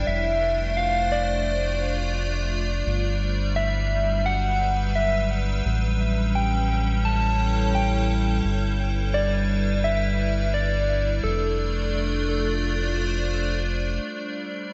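This intricate, playful IDM fragment opens with three parts at once: an icy, crystalline glass pad holding sustained chords, a round analog bass sitting deep and up front, and a soft, struck FM synth lead carrying the melody between A4 and A5. The tempo is an unhurried 86 BPM in 4/4, with a light swing on the 16ths that gives the groove a lilting lean. The lead sounds gentle and keys-like, with a warbling, vintage character, a sub octave beneath it, and chorus and delay trailing each decaying note. The pad is airy and detuned, with a slow attack, a noise layer and its own reverb, while the bass adds tube-saturated sawtooth and sine weight. The harmony moves through F6, Gmaj7, A7 and Em7/G before returning to F6 and landing on G5. A lush hall reverb soaks the dreamy mix, its top end rolled off, and the lead drops out at 13.3 seconds and the bass at 14.0, leaving the pad to ring on alone until 14.7 seconds in this fragment cut from a longer piece.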